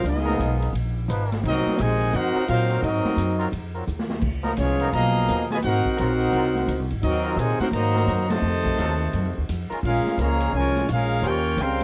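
Big band swing in a brassy, joyful mood, this short excerpt puts a clear trumpet section up front on the melody with light vibrato and a soft, vintage attack, while a smooth-topped trombone section carries a second line. Behind them, a muted trombone section in straight mutes holds nasal, bright sustained chords in the background, and an up-front pizzicato upright bass sounds woody and thumpy. A distant, roomy drum kit with a boomy kick, ride, hi-hat and crash swings underneath, adding a fill at 3.9 s before the band hits an accent at 8.3 s, all in a dry sound.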